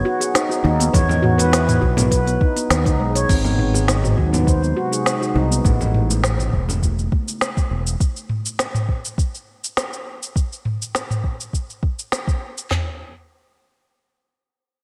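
A ringing, mellow handpan opens this earthy, meditative organic downtempo piece at 102 BPM, its soft-fingered arpeggios passing through a low-pass filter and digital delay before falling away at 5.6 s. A punchy fretless electric bass with tube saturation sits up front beside two produced electronic drum kits, one carrying cabasa, crash, crisp hats, woody snare and toms under gated reverb and the other supplying handclaps, a soft kick, snare and toms, while distant congas and bongos ring from a large room in the background. From 4.1 s a warbling, nostalgic lo-fi pad with detuned square, triangle and sawtooth tones, chorus, phaser and sidechain pumping sustains dark chords, all set in light reverb and bright 1980s-style digital production, and the drums carry on alone once the chords drop out at 8.0 s.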